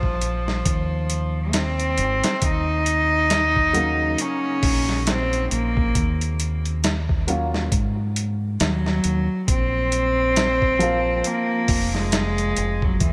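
Trip hop with a melancholic, brooding mood, set in a swung 4/4 feel over Bbsus2 and Ebm7 chords. A floating, distant bowed cello carries the melody with a soft attack, gritty 12-bit sampler color and tape echo, over a mellow felt-muted upright piano with audible action noise, harmonic tremolo, tape echo and a filter sweep, a round, dark fingered electric bass, and a compressed, pitched-down boom bap drum kit with a thumpy kick and medium-tuned snare. Plate reverb and bright 1980s-style digital production frame this brief excerpt, with all four parts sounding from 0.0 seconds.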